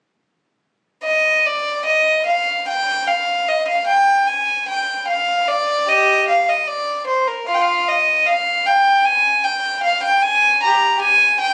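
A lone violin with an airy, nasal gut-string tone and period styling plays up front and close from 1.0 to 11.5 seconds in this flowing, serene baroque-style suite movement, moving with a rubato feel around 75 BPM in 4/4, heard through a moderate stone-room reverb in a compressed phone recording with club ambience, cut from a longer piece.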